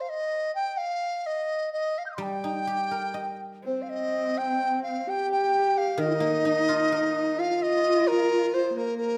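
Tender and wistful, this excerpt from a longer piece of traditional Chinese chamber music drifts along at 64 BPM in 2/4, with a free, rubato feel. A mellow bamboo dizi carries the melody from the opening, its pure, straight tone, soft attack and buzzing membrane sitting up front and expressive, with a faintly distant quality. A guzheng enters at 2.2 s with a ringing, silvery accompaniment played with fingerpicks. At 3.6 s a single bowed horsehead fiddle joins on a second line, husky and up front, its horsehair strings colored by vibrato and portamento. Around 4.1 s the music moves into a new passage, all three voices set in a moderate concert hall reverb that lends the ensemble a gentle, spacious glow.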